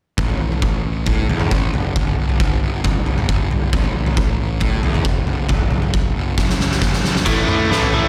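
Restless, bittersweet quiet-loud alternative rock in a straight 4/4, cut from a longer piece, where a growly fuzz-drenched picked bass and an oversized, low-tuned acoustic drum kit with a punchy kick, fat snare, dark cymbals and a pumping big-room sound drive forward until a drum fill at 6.4 seconds ushers in a bright, scooped, double-tracked overdriven guitar riff at 7.3 seconds.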